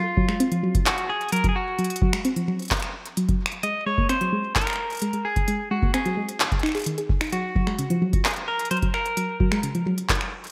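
A bright, 1980s-style digital sheen and a plate reverb frame this playful, intricate IDM excerpt, where a twangy, clean electric guitar melody with delay rides over soft, round, gritty pluck arpeggios with chorus, while a deep analog kick and an overdriven industrial kit of crisp hats, finger snaps and handclaps with gated reverb drive the groove as the harmony moves from a chordless opening to Ab5 at 3.6 seconds and Gbmaj7 at 7.3 seconds.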